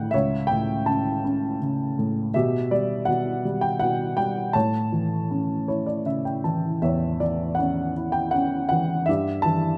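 A triple metre moves with an unhurried rubato through this short excerpt of lyrical classical solo piano, its mood peaceful and warm. A single dark upright piano plays alone from 0.0 to 9.8 seconds, mellow and woody with a slightly detuned, intimate character, its action noise audible through close, detailed microphones that place it up front in light reverb. The harmony settles from A over C# through Em9 to A, with a brief piano fill at 5.3 seconds before an Em chord arrives near the close.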